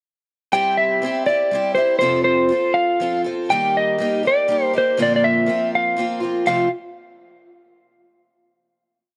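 A dry, close, 1970s-style small-room studio sound frames this hopeful, jangly rock piece in 3/4, where a shimmering, octave-doubled picked twelve-string acoustic guitar strums open chord shapes in eighths beneath an up-front, slightly broken-up electric slide guitar playing compressed hook phrases, both sounding from 0.5 to 6.7 seconds as the piece lands on a final chord at 6.5 seconds.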